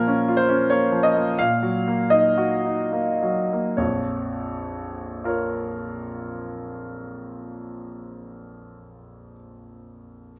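Moving in a rubato triple metre that slows down over the first 3.8 seconds, this bittersweet, stormy romantic character piece for solo piano, cut from a longer work, features a brilliant, smooth grand piano with a vintage tone and long sustain, heard up front through close, detailed microphones in a moderate large-studio reverb as it spans the low bass to the upper middle register over chords moving from Bbm to Ebm/Bb and back to Bbm at 3.8 seconds.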